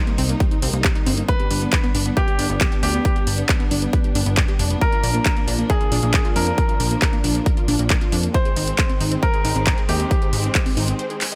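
Wrapped in digital ambience, this bittersweet, euphoric stretch of uplifting trance, cut from a longer piece, sets an overdriven, up-front kick drum beside a tape-warm analog drum machine's handclaps and hi-hat, with a funky, wave-folded bass and lush, detuned unison pluck arpeggios pumping to the sidechain, vibrato-rich bowed string chords that also pump in the background, and a clear, polished baby grand piano carrying a second line through delay, before a brief break at 11.0 seconds.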